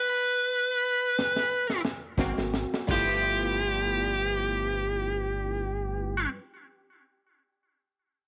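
A light studio reverb surrounds this short cut from a swaggering, soulful straight-eighth soul blues in G mixolydian, which slows within its 82-97 BPM range over the opening seconds. An overdriven, dark lead guitar carries the melody up front from the start through a stop, while a crunchy, gritty breakbeat kit with a punchy kick and high-tuned snare plays a fill before dropping out at 3.1 s. At 2.2 s a barky tine electric piano with ensemble chorus, a rubbery, hollow square-wave bass and twangy, direct-recorded clean guitar stabs with analog chorus in the background arrive on an Ab9 that moves to G13.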